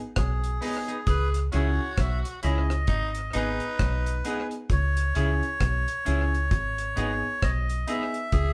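A slow 66 BPM roots reggae groove in 4/4, swung on the sixteenths, sets a hypnotic, meditative mood in this short cut from a longer piece. The deep drum kit sits dry and up front with a tight kick, hi-hat and rim click, while the fingered dub bass rumbles dark and round, foam-muted and direct, holding the low G#1 to C#2 register. A reedy, breathy melodica carries the melody with a nasal, boxy plastic-case character, joined from 1.1 seconds by a raspy, gritty tenor saxophone with vibrato and a punchy edge as a second line. A bright, clean semi-hollow electric guitar picks out accompaniment and a clear baby grand piano adds open stabs with long sustain, both entering at 0.6 seconds. The harmony sways between G#m and C#m, and the band sounds as if playing live together in a large studio with moderate reverb.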